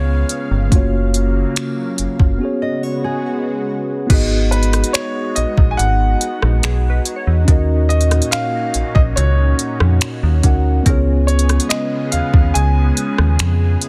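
A smooth, straight 4/4 groove at 71 BPM carries this tender contemporary R&B passage, cut from a longer piece, with an up-front, tape-warm electronic drum kit of soft kick, crash, finger snaps, hi-hat and rim click, and a softly clipped snare. Beneath it sits a metallic FM bass with a fast, decaying attack, equally forward in the mix. A mellow tine electric piano, heard through its built-in speakers, supplies clean accompaniment, while a lush, detuned unison pad, thick with chorus and phaser, holds slow-attack chords over harmony that moves from C#7 and F#maj7 to G#m7, D#m7 and back to C#7. On top, a clear, intimate baby grand with audible action noise and long sustain sings the melody through a touch of delay. During a short break, a thumb-plucked nylon-string guitar adds fresh-stringed arpeggios from 2.6 to 4.1 seconds, and from 4.1 seconds a glassy, warbling wavetable pluck with ring modulation and a filter sweep shimmers in the background. 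The whole sits in digital ambience with a dense, heavily limited modern master.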